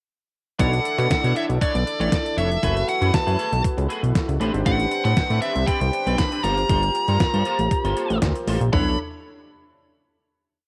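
Slick and late-night, this early-eighties boogie funk piece rides a thumpy, overdriven four-on-the-floor beat from a detuned 8-bit drum machine and a fat, syncopated sawtooth bass line with muted ghost notes and chromatic approach notes, both up front. A glossy chorused polysynth holds mellow rootless chords, and a bright, twangy guitar at the edge of break-up plays choppy sixteenth notes in the background. Above them, a nasal lead guitar with a parked wah, overdrive and slapback echo plays short call phrases, and after the parts begin together at 0.6 s, the piece settles onto a closing Bm11 chord at 8.7 s in light reverb.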